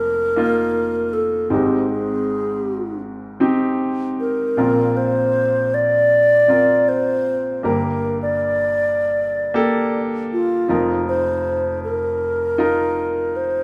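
Pop material in B-flat major, this short excerpt moves at an unhurried 79 BPM in a straight 4/4, with an emotional, heartfelt mood. An alto flute carries the melody from F4 to D5, its airy, hollow tone close-miked and up front, with a straight, steady sound and crisp attacks. A baby grand piano accompanies throughout, spanning F1 to Bb4, its sound clear, present and polished as it sits up front alongside the flute. The harmony drifts from F7sus4 to Ab, then to Bbsus2 at 4.6 seconds and Gmadd9 at 7.6 seconds before returning to F7sus4, giving the passage an open, yearning quality. The pair sound as if playing live together in one large studio, bathed in a generous reverb that lends the intimate duet a sense of space.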